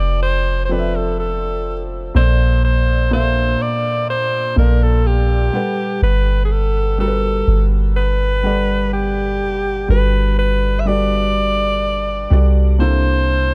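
A clear, punchy alto saxophone with vibrato and a touch of delay carries a forceful, jazz-style solo melody up front through this dreamy, smooth contemporary R&B excerpt at 62 BPM in 4/4, tuned to A4 = 444 Hz, over a mellow felt-muted upright piano whose action noise lends intimacy and a deep, round 808-style bass with a fast attack and decaying sine tone, all moving from Fmaj7 through Bbmaj7 and Gmaj9 to a closing C13 in a dry, dark mix.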